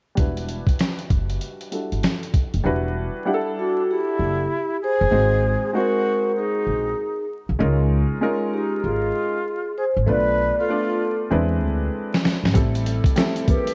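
Dark, vinyl-crackled production with light small-room ambience frames this cool, smoky jazz-hop excerpt, where a worn, slightly detuned upright piano and a woody pizzicato upright bass sit up front beneath muffled, compressed sampler-style drums with a thumpy kick that fall away after the opening and return near 12.1 seconds, while a mellow soft-mallet vibraphone with analog delay and a breathy flute with vibrato enter at 3.6 seconds, and close, dry egg shaker and hard-hand congas slip in faintly at 12.6 seconds.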